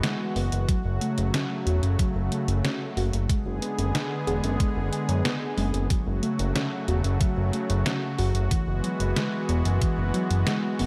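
Nostalgic and nocturnal, this synthwave excerpt in F# minor moves at 92 BPM in a straight 4/4, with a smooth, detuned sawtooth pad holding sustained chords up front with chorus and sidechain pumping, while a soft, round pluck with chorus, cassette tape character and tape echo plays dark arpeggios in the background. A detuned 8-bit drum machine supplies hi-hat and a medium-tuned snare in gated reverb, a fat, thick bass with a moving notch and its own sidechain pumping enters at 0.4 seconds, and a thumpy, tape-warm electronic kick re-recorded in a small room sits up front from 0.7 seconds. The chords move from Eadd9 to F#m and G#dim, then back through F#m before returning to Eadd9, all under a light reverb.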